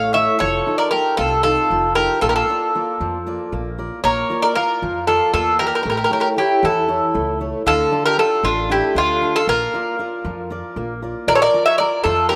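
In a straight 7/8 at 232 BPM counted in eighths, this cool, bittersweet Greek folk passage puts a metallic, double-strung bouzouki melody up front, with a woody picked mandolin second line beneath it, full-bodied fingerpicked jumbo acoustic guitar on fresh strings, and pizzicato steel-strung upright bass, moving through F7, Bb, A and Dm in a rough home-demo mix with moderate plate reverb.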